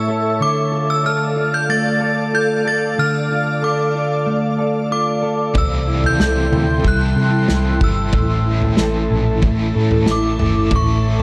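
A dark, compressed clean electric guitar sits up front with chorus-soaked, tape-echoed arpeggios, joined from the start by a ringing FM synth chime melody and a shimmering, ethereal ambient pad holding sustained chords in this hazy, haunting dream pop fragment in D minor at 93 BPM. At 5.5 seconds a loose indie drum kit with a pumping small-room sound and a tight kick arrives alongside a softer, double-tracked overdriven guitar with tremolo, and a round, foam-muted picked bass follows at 5.6 seconds. The chords move from Dm to C6 to A under a dark, warm production with light reverb and studio ambience.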